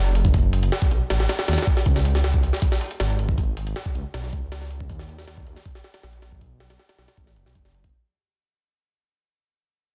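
The recording is dense and heavily limited, with little reverb, and the whole short cut from a longer piece sits inside a fade-out that runs its full length of 7.9 seconds. It is drum and bass in the jungle vein, moving at a straight 158 BPM in 4/4, with a nostalgic, atmospheric mood and tuning set slightly low at A4 = 439 Hz. A detuned saw bass opens at 0.0 s and holds the low end between F#1 and D#2; it is thick, dark and menacing, its beating detuned sawtooth blended with a sine, saturated, with a fast attack and long sustain, placed up front. The jungle sampler-style drum kit arrives at 0.1 s with hi-hat, kick and snare, pitched up and compressed, pairing a thumpy kick with a high-tuned snare. The kit sounds gritty and tape-touched, carrying the air of having been re-recorded in a large room, yet it still sits up front beside the bass.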